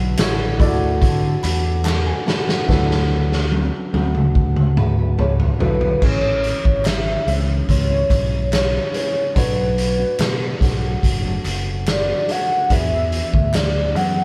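A detuned, warbling lead with chorus carries the melody over fingerpicked dreadnought guitar with vibrato, woody upright piano, round picked electric bass, a gritty, saturated garage drum kit and crisp background handclaps in this dreamy, laid-back bedroom pop excerpt, with a piano fill at 1.0 seconds and drum fills leading into the shift to Amaj7 at 6.0 seconds.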